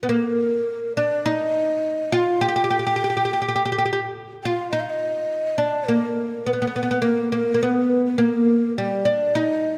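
A woody, plectrum-plucked fretless oud with double strings leads up front in this festive, warm Arabic maqam ensemble excerpt in G maqam saba at 104 BPM in a straight 4/4, tuned to A4 = 441 Hz, while a breathy mellow ney with a hollow, soft-attack tone carries a quieter second line above it from 0.1 s, both set in a dark production with moderate concert hall reverb as the music moves into a new section at 4.7 s.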